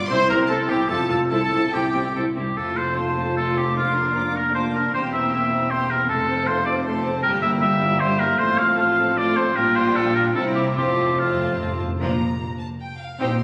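A clear, up-front oboe with light vibrato and a soft attack stands out in this lively, spirited classical-period movement for symphony orchestra, a quick 3/4 in F major cut from a longer piece and played with rubato at roughly 139-159 BPM. Above it, a close, expressive violin section carries the melody with vibrato, while a second violin section, a pure straight-toned flute and the oboe weave second lines beneath, joined by a smooth, distant viola section in the accompaniment. A dark, roomy French horn section holds sustained chords, and a distant trumpet adds brief stabs only in the opening 2.2 seconds. The bass is anchored by a focused double bass section and a smooth, even cello section in the background, and timpani played with medium mallets enter at 2.6 seconds, returning for a fill from 10.8 to 12.0 seconds. The harmony moves between F, C, Bb and passing diminished and seventh chords before the opening idea returns at 12.0 seconds, all heard through a wet, spacious stage reverb captured on a phone in the room.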